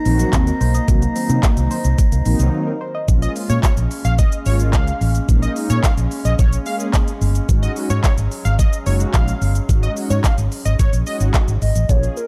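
A hollow, woody clarinet-like synth lead with chorus and delay opens this driving, confident dance-pop excerpt over a distant, roomy woodwind section. It is joined at once by brassy, detuned synth brass, a soft round pluck playing arpeggios, a foam-muted vintage fingered electric bass and a knocking, up-front pop drum kit with handclaps, crisp hats and shaker, while the woodwinds, brass, pluck and bass pump to the sidechain. The pluck drops out during a brief break, and a punchy, catchy unison lead with delay takes the melody from 3.2 seconds, before the clarinet-like lead returns at 11.6 seconds in a dark, dry and warm production.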